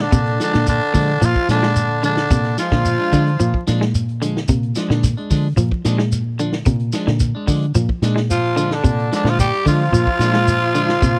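A straight 4/4 afrobeat groove at 110 BPM rides on a punchy vintage drum kit with a rolled-off top, a grainy shekere and a round, foam-muted dub bass, all sitting on a single Bb7 chord in Bb mixolydian for this joyful, funky cut from a longer piece. A hollow-body semi-hollow guitar picks arpeggios in the background while a twangy clean guitar with subtle chorus plays stabs, and a gritty, growling tenor saxophone carries the melody up front, backed by a distant, roomy tenor and a very quiet raspy baritone in two bursts, from 0.0 to 3.6 seconds and from 8.3 to 11.2 seconds. The dry, close 1970s-style studio sound carries small room ambience and vinyl crackle.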